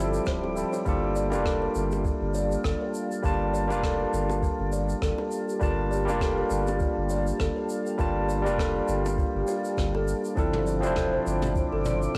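A barky, bright tine electric piano sits up front in this relaxed, smooth sunset chillout excerpt, its chords carrying cassette-tape grit and tape echo as they move from Fmaj7 to a long stretch of Gm9 before settling on Dm9 near 10.4 seconds. A round, deep analog bass anchors the bottom, while a shimmering, ethereal pad with chorus, phaser and granular octave-up sparkle drifts in the background beside a buzzing, woody kalimba playing tape-echoed arpeggios. A lightly swung groove comes from an airy brush kit with rim clicks, shaker and toms, a dry electronic kick entering at 0.3 seconds, and very quiet, high-tuned bongos, all in a moderate room with a homespun cassette character.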